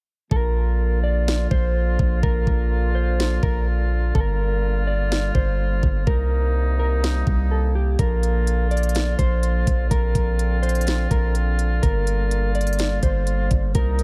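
Atmospheric cloud-rap hip hop at 125 BPM in a half-time feel, melancholic and ethereal, where a dark, clean fingered electric guitar melody with tape echo floats over a woodwind section's sustained chords with light vibrato and sidechain pumping, a deep, sine-like 808 bass that is up front, and a trap kit with a knocking kick and sharp snare whose crisp hi-hats stay muted until 8.0 seconds, all set in a digital ambience and cycling through Bb, Gm7 and Cm7 in this excerpt cut from a longer piece.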